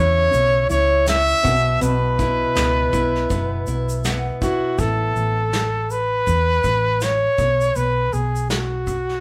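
Acoustic pop at 81 BPM in A major with a gentle 16th-note swing, this easy-going, heartfelt excerpt puts a breathy, close-miked trumpet up front with an intimate, whispered melody and vibrato, over a round, dark hollow-body electric bass, a full-bodied picked jumbo steel-string guitar that stops at 5.4 seconds, and a soft brush kit with tight kick, snare and shaker entering at 0.3 seconds, all captured as a band playing live in one room with moderate studio reverb as the chords move from C#m through E5/B to Asus2 and B5.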